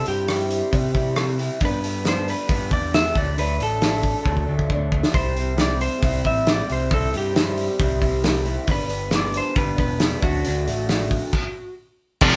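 This quiet-loud alternative rock excerpt opens with a full band playing live in one room at 136 BPM in a straight 4/4, moving through C, G and D with a bittersweet, restless mood. A dark, slightly broken-up lead guitar carries the melody while a lo-fi, compressed electric guitar through a small old amp plays phaser-tinged arpeggios. Underneath, an overdriven picked bass adds a growly, punchy low end, and a loose indie drum kit sits up front with a punchy kick and a medium-tuned snare, playing a fill at 4.3 seconds. The arpeggiated guitar drops out at 11.3 seconds as the band hits a stop, and at 12.2 seconds two double-tracked distorted guitars, one a thick, bright fuzz and the other scooped and high-gain in the background, crash in with a riff just as the clip ends. Light reverb colours the live room sound.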